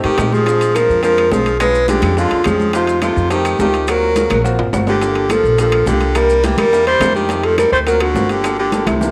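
Afro-Cuban jazz at a brisk 211 BPM in straight 4/4, this danceable, sophisticated excerpt sits in F mixolydian and moves through rich changes such as Bb9, Bdim7, F9, D7alt and Gm7. A dark, breathy alto saxophone carries the melody with vibrato, soft attacks and scooped notes, sounding distant and intimate, while an edgy, punchy baritone saxophone plays a forceful second line lower down. A warm grand piano supplies accompaniment in the background, and a thumpy pizzicato upright bass with steel strings anchors the low end. The percussion bed blends thick-skinned, high-tuned congas, round low-tuned bongos and ringing metal-shell timbales, with woody claves and grainy, vintage-toned maracas joining at 0.2 s. Drum fills punctuate the groove at 4.6 s and 8.7 s, all set in a moderate echo chamber reverb alongside a small room ambience.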